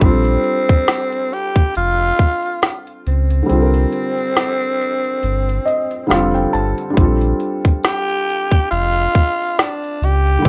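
This cosy, dreamy lo-fi hip hop excerpt opens with a breathy, growling tenor saxophone melody, softened by a low-pass filter and plate reverb, over a mellow felt-muted upright piano, a deep sine sub bass with octave, and a tape-toned electronic kit with a tight kick, woody snare and crisp hats, all at a slow 69 BPM in Bb major with a light swing. The kick drops out from 3.5 to 7.0 seconds, and the piano plays a fill from 5.2 to 7.0 seconds, as the chords move from Bbmaj9 through Csus2 and F back to Bbmaj9. A jingly tambourine sits in the background from 0.9 to 9.8 seconds within a moderate studio ambience.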